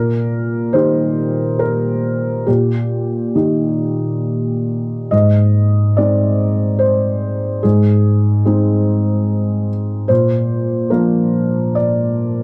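A rubato pulse in 3/4, hovering around 66-74 BPM, carries this reflective, intimate neoclassical minimalist piano piece, heard in a 12.4-second excerpt from a longer work. A felt-muted upright piano plays alone throughout, its dark, boxy tone sitting up front in a moderate booth ambience. The harmony moves from Eb over Bb to Ab at 5.1 seconds and settles on Bb at 10.1 seconds.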